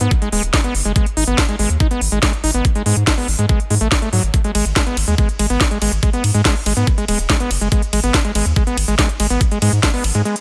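An up-front, squelchy, gritty acid bass riff with distortion, sidechain pumping and delay drives this hypnotic psychedelic trance excerpt at 142 BPM in G# phrygian, over a round, deep analog bass, a knocking electronic kick and a drum kit of cracking snare, crisp hats and ride cymbal in a digital ambience, until a break at 10.3 seconds.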